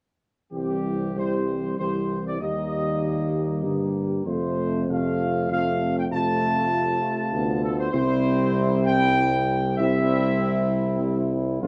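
A regal, solemn classical brass passage in C major and 3/4 at 97 BPM opens at 0.5 seconds with the full ensemble together: a dark, distant trumpet section carries the melody up front while mellow, close-miked trombones and a warm French horn section with light vibrato hold sustained chords. A clear tuba with a vintage edge supplies the bass as the harmony moves from C through Eb and F before settling back on C at 7.9 seconds. The sound sits in a moderate large-studio reverb with a dark production, and this short passage is cut from a longer piece.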